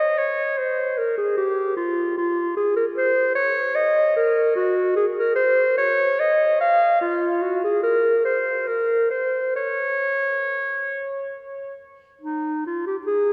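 A serene, flowing baroque-style fantasia for unaccompanied clarinet, cut from a longer piece, unfolds in Db major at an unhurried 66-76 BPM in 3/4 with a rubato feel. The solo clarinet sits up front with a mellow tone and smooth top, moving between Eb4 and F5 across its 13.3 seconds, while a lush church reverb lingers around each phrase for a long, airy decay.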